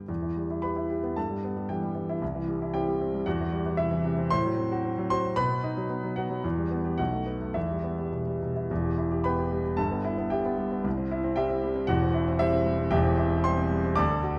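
A dark, intimate recording places a grand piano up front in a reverberant recital hall, its long sustain blooming into the room while the noise of the action stays audible. This brilliant, heroic classical study in E minor moves at 113 BPM in 2/4 with a flexible rubato feel, the solo piano ranging from deep bass to bright upper notes across the roughly 14-second passage cut from a longer piece. Its harmony travels from E minor through C major and a diminished chord to B major before returning home, then restates that opening path from 8.7 seconds.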